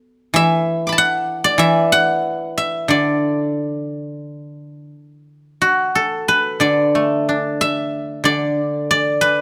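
This serene, flowing piece of Chinese traditional solo plucked-string music sets a lone guzheng, played with fingerpicks, in D gong mode with a rubato feel around 83-99 BPM in 4/4. The acoustic instrument sits up front, its silvery, ringing tone spanning D3 to D6, captured by close, detailed microphones with light reverb. In this short passage cut from a longer piece, an opening section gives way to a new one at 5.6 seconds before the recording ends at 9.4 seconds.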